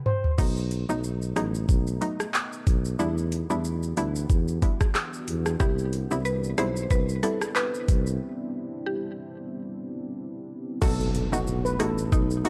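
A swung 92 BPM dancehall groove from an overdriven, up-front island pop drum kit with knocking kick and metallic hats drives this tough, hypnotic piece over B7, Em7 and Cmaj7, as a mellow tuba with light vibrato carries the bass, a hollow, nasal square pluck and a deep, moody ambient pad pump beneath, a woody mallet-like synth pluck with tape echo joins at 5.6 seconds, and a shimmering steel pan melody returns at 10.8 seconds after a break, alongside an electronic impact.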